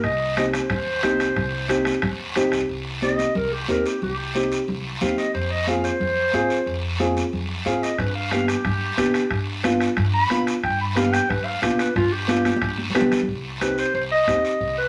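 A danceable, passionate cumbia excerpt at 181 BPM in C harmonic minor opens with a distant, roomy classical-style clarinet over woody pizzicato upright bass, a soft-beater bombo and a raspy, close guiro, joined almost at once by a dark, mellow, slightly detuned vintage upright piano up front with audible action noise and by bright, high-tuned congas in the background; the clarinet takes a solo from 2.7 seconds over Cm, Fm and G7, the bombo returns at 8.0 seconds, and a drum fill at 12.5 seconds leads back to Cm, all set in a wet studio reverb.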